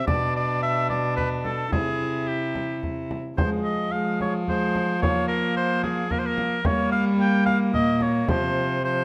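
Courtly and rustic, this excerpt of a renaissance-style consort dance in triple time places a clear oboe melody with light vibrato up front over a one-player viola's bowed, gut-string accompaniment and a rich, reedy period-style cello bass, with a deep frame drum played with soft hands, close and dry, in a moderate recital hall, as a new section begins at 3.4 seconds.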